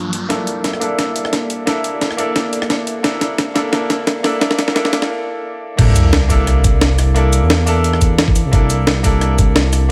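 A lightly swung sixteenth-note groove in 4/4 drives this dreamy, soulful liquid drum and bass fragment, cut from a longer piece. A gritty, pitched-up breakbeat kit sits up front with a high-tuned snare, hi-hat, rim click, cabasa and crash in a small room, playing a fill through most of the build-up that opens at 0.3 seconds after a brief electronic riser. Beneath it, a smooth sawtooth-and-square synth bass glides with portamento, while a brilliant, polished baby grand piano plays short-sustained accompaniment through delay and a filter sweep over a C13 chord. An airy, breathy pad with a moving notch and chorus floats softly in the background until it drops out near the end of a short break. At 5.8 seconds the drop lands with an electronic sub drop and a layered, knocking electronic kick that joins the breakbeat, all under a light reverb.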